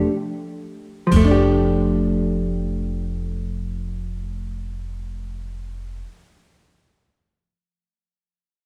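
A clean, compressed hollow-body jazz guitar opens this romantic, intimate jazz ballad in free time, sitting up front as it lays down a dark, picked accompaniment. At 1.1 s a woody pizzicato upright bass joins on a low note, and a brush kit adds a brief touch of dark crash cymbal and boomy kick drum. A lush hall reverb surrounds the rough, homespun demo mix of this short fragment cut from a longer piece.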